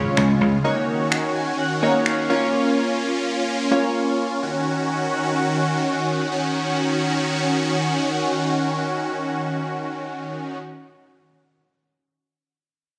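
A straight four-beat dance-pop pulse drives this short, bittersweet excerpt cut from a longer piece. Huge, lush supersaw chords sit up front from the start and sustain to 10.6 seconds, their detuned unison sawtooth layers carrying a moving notch. Chorused retro synth keys, glossy and airy with a pulse-width-modulated edge, a noise layer and a filter sweep, play fast-attack, decaying accompaniment until 4.3 seconds and add a fill along the way. A dry, punchy thumbed slap bass lands one bright, foam-muted note at the very opening, while tape-tinged electronic finger snaps enter a moment later and mark time until 2.2 seconds. The harmony moves from Db through Ebm7 and Bbm back to Ebm7, and the whole is heard as if captured on a phone in the room, with club reverb, a moderate lush hall reverb and compression.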